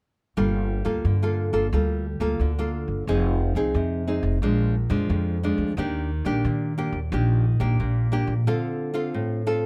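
Bittersweet and nostalgic, this short samba excerpt pairs a full-bodied, fingerpicked nylon-string guitar with a woody, dark pizzicato upright bass, both up front under close, detailed microphones and light reverb, moving through rich seventh chords from Gm9 to Ebmaj7 before the bass drops out at 8.4 seconds and the guitar carries a brief break alone until 9.7 seconds.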